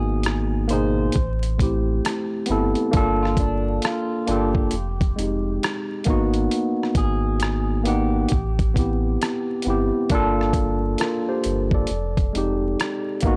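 Lo-fi hip hop with a nostalgic, melancholic mood, this excerpt rides a swung sixteenth-note feel over minor ninth chords, with a worn, slightly out-of-tune tine electric piano up front carrying the accompaniment through a cassette-tape haze while a deep sine sub bass with octave, thick with tube saturation, holds the low end. A dusty, compressed sampler-style drum kit with a thumpy kick, hi-hat and rim click enters at 0.2 seconds, and a dark, slightly broken-up picked electric guitar through a small old amp sings a soft melody with analog delay until 10.1 seconds. The gritty hardware recording sits dry under light reverb, wrapped in vinyl crackle.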